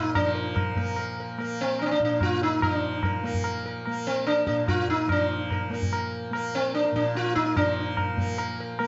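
Hindustani classical music in raga khamaj, this short excerpt cut from a longer piece moves at 146 BPM in a three-beat metre with a straight feel, and its mood is radiant and meditative. The sitar carries the melody up front between C4 and Bb4, its plectrum-plucked tone round and buzzing, with sympathetic strings adding a shimmering halo. Beneath it the tanpura holds a softly plucked drone from Bb2 to Bb3, its buzz lending a glowing, resonant bed. The tabla joins at 0.2 seconds, high-tuned, close and dry, with a short ring to each stroke. A moderate scoring-stage reverb surrounds the sound, the top end is gently rolled off, and around 7.6 seconds the music shifts into a new section that runs to the close at 8.9 seconds.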